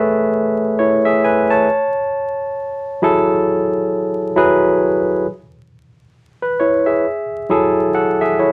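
R&B at a slow 67 BPM in 4/4, this short cut from a longer piece has a late-night, sultry mood, with a gentle swing on the sixteenths and a home in F# minor. A tine electric piano plays alone for the whole 8.5 seconds, ranging from F#3 up to A5. Its tone is barky and lightly overdriven, pushed through a combo amp and sitting up front in the mix. The harmony moves from Amaj9 to F#m9, drops out to a bare moment at 5.3 seconds, then returns to F#m9 at 7.0 seconds. A moderate studio reverb and the feel of a band playing live in one room surround the keys, while a layer of vinyl crackle adds texture.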